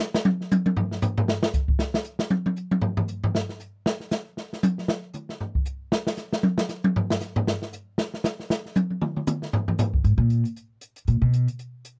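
Smoky and cool, this brief excerpt cut from a longer piece sits in small-group swing and bop territory, moving at a brisk clip in 4/4 with a swung eighth-note feel. An open jazz drum kit carries the opening as a solo, working across hi-hat, kick, snare and toms with an airy, polished sound, a medium-tuned snare and a boomy kick placed up front in a small room. At 10.0 seconds an upright bass takes over the solo spotlight, plucked pizzicato with a woody, warm tone from steel strings, also sitting close and up front. The bass moves within a narrow span from A-flat up to C-flat and stops at 11.5 seconds, while the drums carry on to 11.9 seconds. The whole passage has the dry, close character of a 1970s-style studio session, touched only by light reverb.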